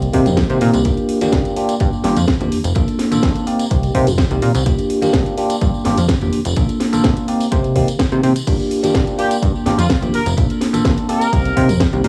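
A bell-like tine electric piano, bright and up front with phaser and cassette tape color, opens this groovy, funky filtered disco house piece in G minor at 126 BPM, alongside a plucky sawtooth-and-square analog bass with tube saturation and a filter sweep, a layered, overdriven house kit with a cracking snare, and soft-handed, vintage tambourine and congas. The piano, bass, percussion and the kit's hats and cymbals all pump against the sidechain, while a punchy analog electronic kick enters at 0.1 seconds as the chords cycle through Cm7, Gm7 and Bbmaj7. At 9.2 seconds a clear, tight horn section with a smooth top arrives with tape echo, set in light reverb and the small-room ambience of a home cassette recording.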